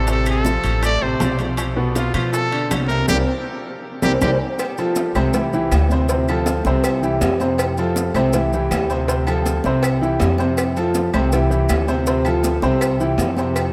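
Drenched in a vast, echoing cathedral reverb, this sunny, danceable salsa excerpt in F major at 160 BPM opens with a bright, punchy trumpet melody with vibrato that drops out at 4.3 seconds amid a drum fill and band accent, leaving a clear, vintage upright piano and a dark, thumpy pizzicato upright bass up front over very quiet round bongos and cowbell, ringing high-tuned congas, grainy maracas, distant metal-shell timbales and agogo bells, and woody claves cycling through F, C and Dm7.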